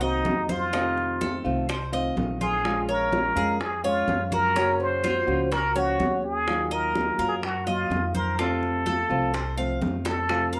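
A straight 4/4 groove at 126 BPM drives this danceable Cuban son and guajira passage, cut from a longer piece. Hard-handed congas with a thick-skinned, compressed and saturated tone sit in the background, round low-tuned bongos join at 0.3 seconds, and woody claves sound briefly at 10.3 seconds, just after a drum fill at 10.1 seconds. Up front, a solo trumpet with a plunger mute carries the melody in a jazz style, its breathy, whispered wah-wah tone soft in attack and intimate yet distant and roomy. Beneath it, a dark, classical nylon-string guitar is fingerpicked on old strings, while a Cuban tres picks metallic arpeggios on double strings, some doubled at the octave. A pizzicato upright bass with steel strings gives a warm, woody bottom through a progression that moves from Cm7b5 and F7 through Bbm7, Gbmaj7 and Ebmadd9 before settling on F. A wet small-room reverb wraps the ensemble in a close, lively space.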